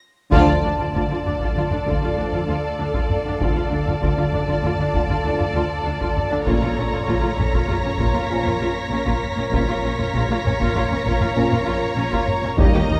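Ominous and eerie, this suspense film-score excerpt moves at 98 BPM in a straight 5/4 in D harmonic minor, opening on a short drum fill and a band accent before heavy-stick taiko drums drive beneath a dark, softly attacked violin melody, a smooth second violin line and expressive viola accompaniment with portamento. Rich, distant double basses and close cellos hold the bass in the background while very quiet, tight French horns and trombones sustain chords, joined from 1.2 seconds by a cloudy, detuned granular pad with its own reverb. At 6.5 seconds the harmony shifts from Dm to Bbm as a faint high violin texture enters, the whole ensemble set in a wet scoring-stage reverb.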